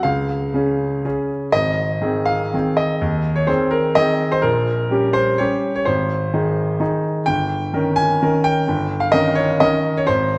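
Set in 3/4 with free, rubato timing between 113 and 136 BPM, this sparkling, graceful classical waltz excerpt features a solo grand piano, brilliant and up front, ranging from G1 to Ab5 and tuned to A4 = 443 Hz, moving through Db, Ab, Gdim/Bb and Eb7/G harmonies across 10.4 seconds in a wet concert hall with a long 2.1-second reverb tail.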